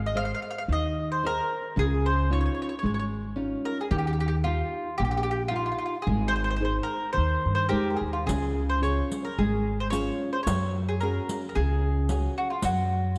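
Lively and sunny, this short excerpt from a longer Italian folk serenade moves at 111 BPM in a straight 4/4, starting in Ab major and shifting to Db major at 8.3 seconds. A picked mandolin carries the melody up front, its double strings giving a warm, round tone touched by analog delay. Underneath, a fingerpicked nylon-string guitar supplies dark, full-bodied classical accompaniment through add9 chords, while a pizzicato upright bass on gut strings adds a woody, thumpy pulse close to the listener. When the music moves into Db, a riq enters with dark jingles played by soft hands, its sound close and dry. A moderate concert hall reverb surrounds the ensemble, and the passage moves through a Gbsus2 chord before a brief chordless moment at the close.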